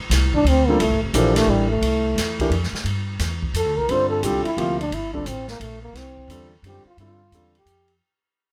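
Closely miked with light reverb, this spiritual, hypnotic modal jazz fragment in swung 3/4 at 175 BPM fades out throughout. It centres on a raspy, growling trombone solo up front with scooped notes, backed by a woody pizzicato upright bass, an intimate grand piano with audible action noise and long sustain, and an open jazz drum kit with dark cymbals and a boomy kick, all over a G9sus4 chord in G dorian.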